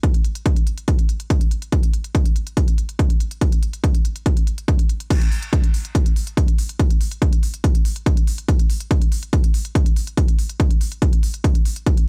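Dark and intense, this short techno excerpt drives along at 142 BPM in a straight 4/4, cut from a longer piece. A heavy, layered electronic kick drum with overdrive sits up front throughout, while a quieter techno drum kit adds smooth hi-hats and crash cymbal, also overdriven. The dry, gritty hardware sound keeps the drums close and raw.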